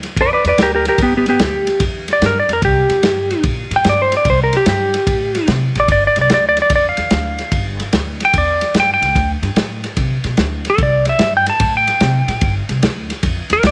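A dark, compressed lap steel guitar sits up front with slide phrasing and volume swells, carrying a soulful solo over a rollicking electric blues shuffle, backed by a growly, woody pizzicato upright bass and a muffled, lo-fi vintage drum kit with a punchy kick, all in a small room with moderate spring reverb.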